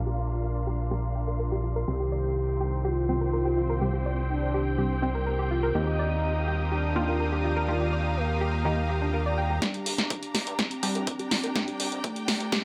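A gritty, saturated sawtooth synth bass sits up front in this driving, dark melodic techno excerpt, pumping under a lush, detuned unison pad, muted dub chord stabs with tape echo, a soft round pluck playing arpeggios, and a dark symphonic string section, with the pad, stabs and pluck moving through filter sweeps. From 1.9 s a smooth, warbling portamento lead carries the melody with vibrato, chorus and digital delay, while the harmony moves from Bb through Cm and Ebadd9 to Gm. At 9.6 s a punchy analog drum machine bursts in with snare and hi-hats, alongside a background electronic kick, for a drum fill and build-up under light reverb.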